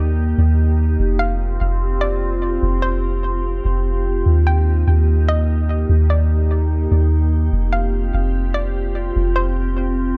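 Awash in digital ambience and echo, this blissful, floating cloud-rap hip hop excerpt in half-time sets a glassy, ethereal FM pad with ensemble chorus and built-in reverb holding sustained chords over a soft, round, up-front 808-style bass, while a hollow, nasal square-wave pluck with chorus and analog delay carries a bouncy melody from 1.2 seconds, as the harmony drifts between Eb and Fsus2.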